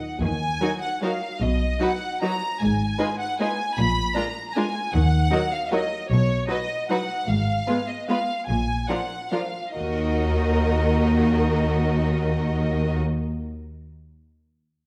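A lush violin section opens this dark, bittersweet orchestral ballroom waltz in Eb minor, carrying the melody in a clear, smooth voice with vibrato, and the cellos and double basses enter at 0.2 seconds to lay down the bass. The cellos sound focused and symphonic, while the double basses add a dark, close weight with a soft attack. From 0.6 seconds a second violin section adds an intense countermelody, and the violas fill in a rich accompaniment with a focused tone. The waltz moves in a rubato 3/4, its tempo flexing between 134 and 165 BPM and slowing from 6.7 to 9.8 seconds as the harmony cycles twice through Ebm, B, an Fm7 or Fdim over Ab, and Bb7 before returning home to Ebm. A brief new section begins at 9.8 seconds, and the whole cut from a longer piece sits in a dark, reverberant recital-hall space.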